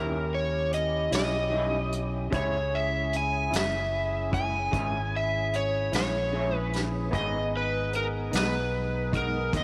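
Smoky and brooding, this slow 12/8 blues fragment puts an overdriven slide guitar up front on the melody, its tone thickened by slapback echo, over a round, dark fingered bass and a fat tonewheel organ holding sustained chords through a slow rotary speaker with chorus vibrato and key click. In the background, a bright, brilliant baby grand piano and a slightly broken-up, lo-fi electric guitar with harmonic tremolo fill out the accompaniment, while a vintage brush kit with a punchy kick and rolled-off top enters at 0.7 seconds. Moving from D#7b9 to C#m and then G#m, the whole band sits in a lush hall reverb that gives it a big arena sound.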